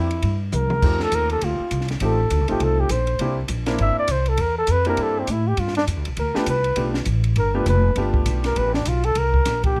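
A mellow flugelhorn carries the melody up front in this short cut from a longer small-group swing and bop jazz piece, its punchy, scooped notes ranging from C4 to E5 across the full 9.8 seconds. The tempo is a brisk 202 BPM in 4/4 with a swung eighth-note feel, yet the mood stays relaxed and warm, centered in C mixolydian over a dominant-seventh progression that moves from C7 to F7, back to C7, then G7 before landing on C7(no3) at 9.2 seconds. An upright bass, plucked and woody with steel strings, sits prominently in the low register, while a concert grand piano accompanies in an intimate middle range, its natural tone carrying audible action noise until it stops at 8.8 seconds. A compact cocktail drum kit, dark and smooth with a rolled-off top, a high-tuned snare and a punchy kick, uses crash, hi-hat, ride and toms and plays a fill at 0.5 seconds. Close, detailed microphones and light reverb give the group a clear, present sound.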